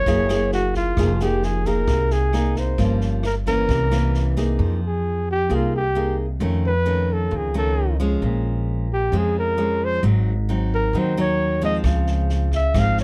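A breathy, mellow flugelhorn with light vibrato and a soft attack carries the melody of this intimate, melancholic bossa nova fragment in F minor at 132 BPM, and it moves into a solo at 4.6 seconds over chords such as Fm7, C7b9 and Dbmaj7. Up front beside it, a bright, fingerpicked classical nylon-string guitar with audible finger squeak supplies the accompaniment, while a woody, thumpy pizzicato upright bass anchors the low end. A swinging big-band drum kit with punchy kick, rim click and a medium-tuned snare plays until 4.4 seconds and returns at 11.8 seconds, all captured dry and detailed with close microphones.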